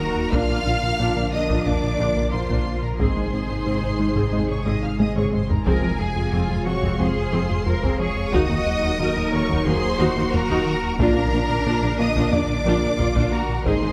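A lush, distant symphonic violin section carries the melody high above a close studio violin section on a second line, both bowed with smooth, even vibrato, in this brooding, futuristic excerpt of a hybrid orchestral and electronic film score at 90 BPM in a straight 4/4. Beneath them, a deep sine sub bass and a round, nasal analog bass riff lay a dark electronic floor, joined by a bowed cello section with a smooth top. From 0.3 s, a very quiet, expressive double bass section enters alongside a focused viola section and a tight, dark French horn section filling in the background, while a tine-like FM synth pluck with chorus and delay spins gentle, decaying arpeggios. An airy, breathy pad with ring modulation and chorus holds soft, mellow chords throughout, and a close, dry taiko ensemble struck with hard sticks drives from behind, adding a drum fill at 5.0 s. The harmony moves through Bb, Ab, F minor and Eb minor before returning to Bb, all set in a moderate scoring-stage reverb.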